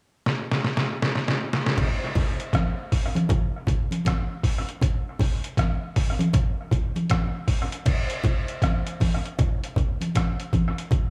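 A swung 16th-note reggae groove at 79 BPM in 4/4 opens with a drum fill from 0.3 to 1.8 seconds on a gritty, pitched-down, sampler-style trip hop kit of thumpy kick, medium-tuned snare, rim click, hi-hat and crash, its tape-warm hits sitting up front through analog delay, before bright, close and dry congas played with soft hands join at 1.8 seconds, giving this uplifting excerpt an echo-heavy mix with light reverb and small room ambience.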